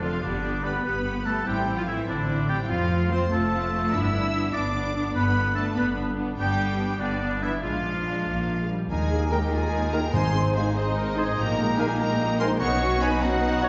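A clear, intense violin section carries the soaring melody of this heroic, adventurous film-score passage in 6/8 at 98 BPM, while a smooth, distant second violin line, a roomy oboe, lush violas, harp arpeggios and a bowed cello and double bass foundation fill out the sound from the first second. Around 8.9 s the harmony turns toward Ebsus4 and Ab, and an airy flute and a vintage-toned, very quiet clarinet add their own lines, followed at 9.3 s by dark, distant French horn chords and mellow trumpet stabs. Dry timpani sound briefly from 10.1 s, all set in a reverberant recital hall heard from further back, with a softened top end in this cut from a longer piece.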